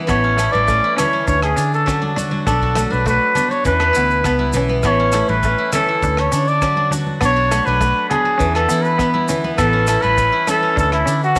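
A straight 4/4 pulse at 101 BPM drives this joyful highlife guitar band excerpt in A major, with a damped 70s drum kit playing hi-hat, kick drum and rim click from the background, its kick tight and dry and its top rolled off. Ringing agogo bells, grainy maracas and thick-skinned, medium-tuned congas, which play with soft hands from 0.5 s, also sit in the background. A dark, round fingered electric bass anchors the low end, while a clean, picked semi-hollow electric guitar with subtle chorus supports the harmony from further back. A steel-string zither played with fingerpicks adds silvery arpeggios through tape echo. Up front, a trumpet carries the jazz-style solo melody with light vibrato and a distant, roomy tone over chords that cycle through A, D, Bm and E5. A moderate echo chamber reverb gives the band a warm glow.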